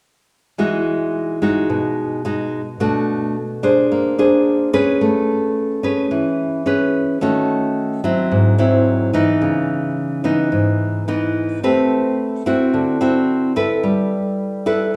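Up front and fingerpicked, a lone classical nylon-string guitar plays sunny, sophisticated bossa nova accompaniment at 109 BPM in E major from 0.6 to 15.0 seconds, moving through lush chords such as Emaj9, Amaj9, G#7alt and C#m9 before settling on G69, all bathed in the wet, lingering reverb of a recital hall in this brief excerpt from a longer piece.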